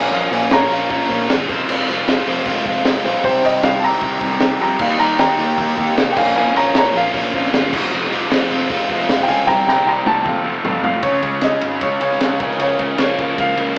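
Indie rock at 154 BPM in Bb dorian, bittersweet and restless, cut from a longer piece, with a woody upright piano carrying the melody as a solo until 11.0 seconds over a faint, shimmering string machine playing sustained violin chords. Two overdriven guitars drive the riffs, a phased semi-hollow guitar alongside a picked electric guitar in the background, while a fuzz-soaked picked bass holds the low end. A compact cocktail kit with a dark, smooth tone, a high-tuned snare and a tight kick enters at 0.3 seconds and plays a fill from 9.5 seconds, all heard as a band playing live in one room with an AM radio sound and a large studio reverb.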